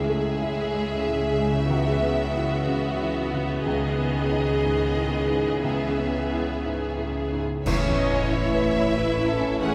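Moving in a rubato 3/4 at 92 BPM, this longing, cinematic film-score fragment sets a lush violin melody and a rich second violin line over background violas and cellos, focused double basses, a soft felt-muted upright piano with audible action noise, a distant, dark French horn section holding chords until 7.3 s, and a very quiet, ringing harp in bright arpeggios, all bathed in a cathedral-like reverb, as clash cymbals and concert bass drum strike an accent at 7.7 s on the closing Aadd9.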